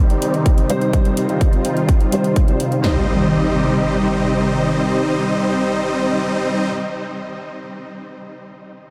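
Soaked in a dreamy, cavernous reverb, this euphoric, emotional festival progressive house excerpt in C minor at 126 BPM sets bright, detuned supersaw chords, filter-swept and sidechain-pumping under a diffuse delay, over a lush, phased supersaw pad and a very quiet, boxy felt-muted upright piano with audible action noise, while a punchy big-room drum kit and metallic electronic hi-hats drive the opening until an electronic impact arrives at 2.8 seconds.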